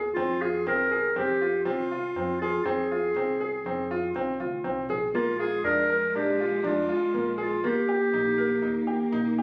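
Clear, up-front concert grand piano arpeggios and a woody pizzicato upright bass open this hopeful yet restless contemporary instrumental cut at 120 BPM in 5/4, joined almost at once by a distant, roomy, classical-style solo clarinet melody and, from 5.1 seconds, a warm, focused bowed cello line with vibrato, all moving over Fm, Bb and Eb with light reverb and the sound of a phone recording in the room.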